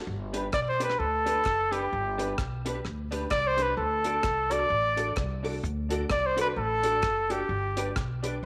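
An upright bass with a woody, growly pizzicato tone opens this upbeat, bouncy ska excerpt in G major at 129 BPM with a swung feel, quickly joined by a deep, tightly kicked reggae drum kit on hi-hat, kick and rim click, a clean, compressed electric guitar with ensemble chorus and slapback echo, background stabs from a slightly detuned upright piano with audible action noise, very quiet hollow group handclaps, and, from 0.5 seconds, an up-front, punchy trumpet solo with light vibrato, tube saturation and slapback echo, all set in a wet spring reverb over a G to D to G progression.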